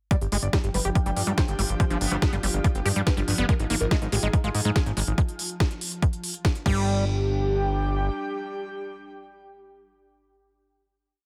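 A digital ambience frames this intense, alien psychedelic trance piece at 142 BPM, driven by an up-front four-on-the-floor electronic kick, a tape-warm techno kit with cracking snare, smooth hats and crash, and a fat, detuned analog bass rolling in sixteenths beneath a squelchy, distorted acid riff that carries a filter sweep. A bold sawtooth unison lead with phaser and tape echo repeats a dark riff melody over a pedal note, while an evolving wavetable pad and an airy, breathy pad with chorus hold mellow chords in the background, all pumping against the kick, and a very quiet metallic wobble bass slips in at 2.0 s. The groove gives way at 6.9 s to a final held note, with the lead and breathy pad ringing on to the close.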